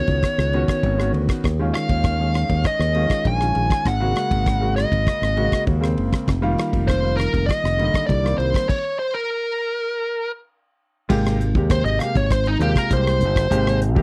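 A dry, close 1970s-style studio sound frames this funky, slick electric jazz fusion excerpt at 99 BPM in 4/4, where a bright, growly fingered electric bass and a damped 70s drum kit with dark cymbals and a tight kick sit up front, a worn baby grand piano with long sustain plays ninth-sus4 chords, and a bluesy overdriven lead guitar carries the melody through a stop from 8.7 to 11.1 seconds before launching a solo over an Abmaj9 chord at 11.1 seconds.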